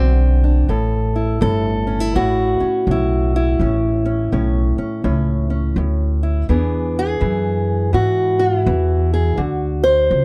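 The recording is dry and close, with a 1970s studio intimacy that sets both instruments up front in a small, unadorned space. This is a soulful, rollicking slice of acoustic country blues for a duo, swung in 4/4 and cut from a longer piece. A fingerpicked acoustic archtop guitar carries the melody across the full 10.2 seconds, its old strings giving a warm, boxy, woody tone that reaches from deep bass notes up into its upper register. Beneath it, a pizzicato upright bass with steel strings plays the low line throughout, sounding growly and thumpy. The harmony moves from D7 to a long stretch of A7, shifts to E7 at 6.5 seconds, and returns to D7 near the close.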